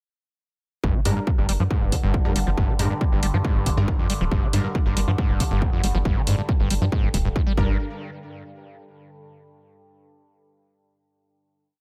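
Dry and loud, this complete driving peak-time techno piece in G phrygian at 138 BPM feels hypnotic and relentless: an up-front, tape-warm four-on-the-floor kick, analog hi-hats and a tight, punchy sequencer bass carry a rolling staccato groove beneath a squelchy, distorted acid line with accents, slides and a filter sweep, treated with chorus, tape echo and sidechain pumping. A detuned drone with moving overtones hums quietly from 1.5 s, sparse, bright rave stabs echo in the background as one chord shape moved in parallel, and the groove gives way to a final hit at 7.8 s.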